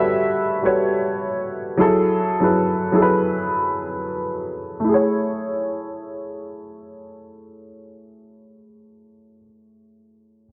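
A dusty cassette-tape haze, dulled above 7.9 kHz, wraps this short cut from a longer hip hop piece in a dreamy plate reverb. A worn, woody, slightly detuned upright piano sits up front as the sole accompaniment, swinging gently through lush chords from Gmaj9#11 to F#m9, with a filter sweep drifting over it for the first 4.9 seconds before it settles on Amaj7. The mood is cosy and dreamy.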